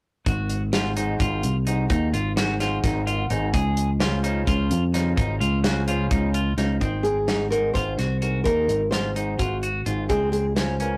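Progressive instrumental band music in a driving, intricate 7/8 at 256 BPM (eighths) in Ab mixolydian, where bright picked arpeggios on clean electric guitar, an up-front fretless electric bass, a warm soul drum kit with a tight kick and a rolled-off top, and a clear grand piano, which adds a fill at 2.8 seconds, move between Ab7 and Dbmaj7 until a full-bodied fingerpicked nylon-string guitar takes the melody at 6.8 seconds, all in a rough, saturated small-room rehearsal sound cut from a longer piece.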